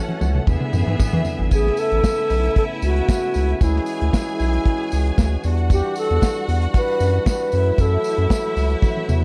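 A bright, reedy alto flute carries the melody from 1.5 s in this joyful, celebratory disco piece at 115 BPM in A major, moving through Amaj9, Dmaj9#11, Em9 and F#m7 chords. Beneath it, an up-front drum kit with a tight kick opens on a fill and adds another at 8.8 s. A round, deep analog bass holds the low end, a lightly overdriven tonewheel organ with key click sustains chords, and a lush, distant bowed string section plays a second line, while a jingly tambourine sits in the background of a dark, warm production.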